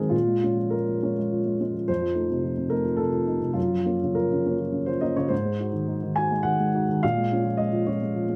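A dark upright piano carries this brief neoclassical minimalist fragment alone, its woody, mellow tone sitting up front with a long sustain that lets each note linger. The playing moves in a rubato triple metre, giving the phrases a loose, breathing quality that suits the reflective, intimate mood. The harmony circles from Bbm7 through F7, Gbmaj7 and Ab7 before returning to Bbm7 at 7.0 seconds, and the piano spans from F2 up to Ab5. Close, detailed microphones capture the instrument in a moderate studio reverb that adds a soft halo while keeping the sound near. Lasting just 8.4 seconds, it is cut from a longer piece.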